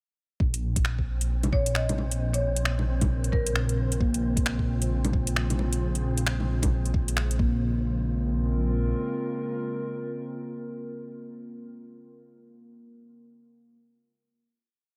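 A dark, ghostly future garage piece in Bb minor at 133 BPM, with light reverb and a digital ambience over a melancholic groove swung on the sixteenths. A knocking, muffled two-step kick and a skittering shuffled kit of metallic closed hats, low bongo and finger snaps sit up front in a small room alongside a deep, rumbling detuned saw bass that holds the root with a saturated growl and a sidechained pump. Far in the background, an airy, breathy wind-like texture holds a high note in its own reverb, while a woody marimba played with hard mallets offers short answering phrases through tape echo between 1.5 and 4.0 seconds. A warbling, nostalgic tape-like pad carries slowly shifting chords with chorus and pumping, and muted, intimate felt-like keys scatter soft notes through chorus and delay. The groove ends at 7.6 seconds, leaving the bass, pad and keys to linger on a final Bbm9 chord.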